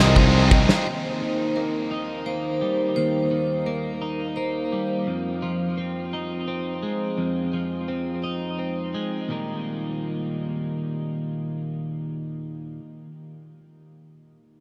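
A clean, compressed twelve-string electric guitar rings up front with chorus-tinged arpeggios and tape echo until 12.8 s in this soaring, euphoric post-rock excerpt at 57 BPM in 6/8 and Eb major, moving between Fm7 and Eb. The opening crowds in briefly: a loose indie kit's punchy drum fill, a growly fuzz bass, two bright distorted guitar riffs set back in the mix, and a very quiet, focused bowed violin note are all gone within the first second. A hard-mallet vibraphone carries on with metallic arpeggios to 5.1 s, and a huge ambient reverb soaks the mix in a dreamy wash.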